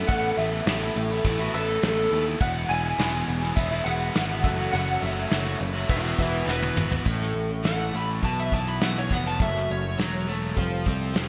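This short slice of folk rock with a heartland rock drive opens with a shimmering, octave-doubled twelve-string acoustic guitar sitting in the background, a dark, double-tracked overdriven electric guitar riff and a punchy picked electric bass, all in a straight 4/4 with a jangly, open-road mood. Almost at once a clean tine electric piano carries the melody through ensemble chorus and digital delay, while a very quiet grand piano adds brilliant, long-sustaining accompaniment, and a soft brush kit sits up front with crash, hi-hat, kick, snare and toms under gated reverb. A warm, overdriven slide guitar with lush chorus slips in briefly at 1.3 seconds, then returns at 5.9 seconds as the chords move through suspended and added-ninth colours. As a drum fill rolls in, the electric piano and grand piano drop out near 6.8 seconds, and the slide guitar takes a solo from 7.1 seconds. Moderate plate reverb and a bright 1980s-style digital sheen frame the whole performance.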